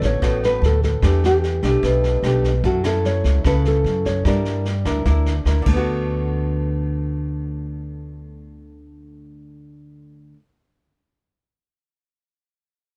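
A straight 4/4 bossa nova pulse at 149 BPM sets a romantic, sunny mood in D major in this short, dry and darkly produced cut, moving from D6 through Em7, F#m7 and Gm6 back to D6. An up-front, fingerpicked nylon-string guitar carries the melody until 5.4 seconds over a second, thumb-plucked classical guitar's chords. A woody pizzicato upright bass sits forward in the mix, and a vintage kit played with brushes adds a punchy kick, rim clicks and dark cymbals until 5.8 seconds, after which the bass carries on to 10.3 seconds and the accompanying guitar to 10.5 seconds.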